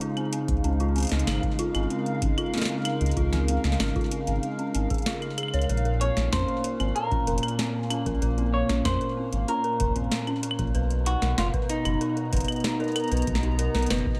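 A straight 4/4 groove from a booming analog drum machine sets the pulse, its crisp snare, metallic hats and claves carrying a tape-warm grain and a trail of delay, while a deep electronic kick and a round, up-front analog bass join at 0.5 s. Over this wistful, intricate IDM passage, a soft, flute-like pad sustains chords that move from Dbmaj7 to Bbmadd9 to Cbmaj7, and an eerie, inharmonic FM bell spins warbling arpeggios through chorus, phaser, low-pass filter and delay. At 6.0 s a clean, picked semi-hollow electric guitar enters with a digitally delayed melody, all set in light reverb in this section cut from a longer piece.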